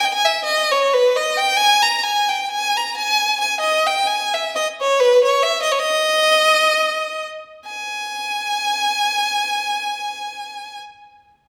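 Balkan folk in free time, a virtuosic and restless solo violin carries this short piece cut from a longer work. The single bowed violin sits up front with a clear, smooth, even tone and vibrato, playing alone from the start until 10.8 seconds. A wet recital hall reverb surrounds it, and the music shifts into a second section at 7.6 seconds.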